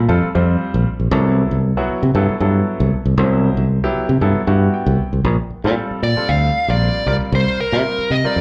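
Bright and funky, this short cut from a longer piece is electric jazz fusion at 116 BPM in 4/4, with a light swing on the sixteenths. A growly, up-front fingered electric bass anchors the harmony from the start, while a clear grand piano with slapback echo provides present accompaniment, moving from Bbsus2 to Cmaj7 and adding a fill from 4.5 to 5.3 seconds. The harmony then shifts to Bbmaj7 and later C5. At 6.0 seconds a smooth, dark overdriven lead guitar enters with a picked melody, also carrying slapback echo, and it sits up front in the mix. The sound is that of a live gig heard through the venue's PA, with club reverb and a top end that stops at 10.8 kHz.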